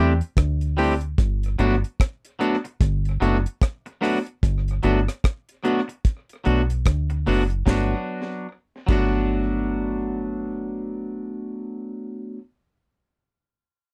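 Lovers rock reggae at 74 BPM in G major, tender and sweet, with a gentle 16th-note swing and a dry, close 1970s-style studio sound, moving from D7sus4 to Gmaj7 in this fragment of a longer piece. A clean tine electric piano sits up front through a combo amp while a bright, twangy picked electric guitar adds stabs, all over a round, foam-muted dub bass that is dark and up front. The acoustic drum kit comes in at 0.2 s with dark cymbals, a high-tuned snare, rim clicks, a tight kick and a touch of tape echo, then drops out at 9.1 s.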